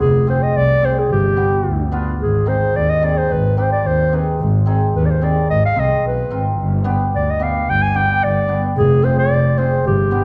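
A dark, warm production in a moderate recital-hall reverb frames this festive yet soulful klezmer fragment, moving at 110 BPM in a straight 2/4 over chords of Fm, G and Ab. Up front, a solo clarinet carries the melody in a classical style with a soft attack and smooth top, while a single bowed double bass gives an expressive, nasal, boxy bass line with vibrato and portamento. A mellow hammered cimbalom enters at 0.3 seconds, its shimmering, ringing accompaniment sitting lower in the mix.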